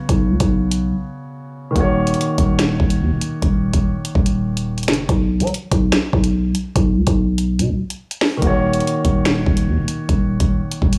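A growling, buzzy 808-style bass anchors the low end of this ominous drill excerpt, its sine tone hitting with a fast attack and decaying while it ranges from Eb1 to F#3 up front in the mix. A drill drum kit plays from 0.1 seconds to the end, its electronic, produced sound built on a knocking kick, a sharp snare, bright hi-hats and finger snaps. A dark baby grand piano carries the accompaniment with a mellow, smooth, vintage tone and long sustain, dropping out at 5.1 seconds and returning at 8.4 seconds. The track sits at 144 BPM in 4/4 with a half-time feel in Eb minor, moving from Bsus2 to Ebm7, with a break between 0.9 and 1.8 seconds. The small room ambience carries little reverb, keeping the menacing mood close and dry.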